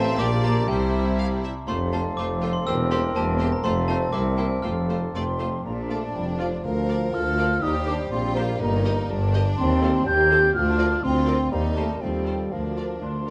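Cinematic orchestral music at 122 BPM in 2/4 with a straight feel, magical and mischievous in mood, cut from a longer piece in F major before moving to Bb major at 5.7 s. A metallic, bell-like glockenspiel struck with hard plastic mallets rings out the melody alongside a clear, intense violin section in the background, and the glockenspiel stops at 5.4 s while the strings carry on. A pure, hollow concert flute with vibrato plays the second line in its high register, joined by a mellow clarinet and a smooth, even violin section. A mellow bassoon and a distant viola section fill in the accompaniment, while a dark, roomy French horn section holds sustained chords until 13.0 s. The bass is built from a double bass section, a rich cello section and a tuba with light vibrato, heard through a moderate recital hall reverb that lends the ensemble a sense of space.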